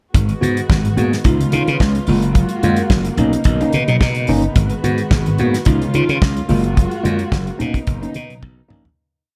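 A four-on-the-floor beat with sixteenth-note hats on a damped, dry 70s drum kit with a fat snare opens this driving, glamorous disco piece at 109 BPM, joined from the start by a glassy, growly slap bass playing octave lines with chromatic approach notes, a percussive tine electric piano groove with tube saturation, a dark, woody string section holding lush sustained chords, and very quiet syncopated congas, cycling through G#m7, C#9, F#maj9 and Bmaj9 in light reverb before a fade-out from 6.8 seconds and a closing drum fill at 8.4 seconds.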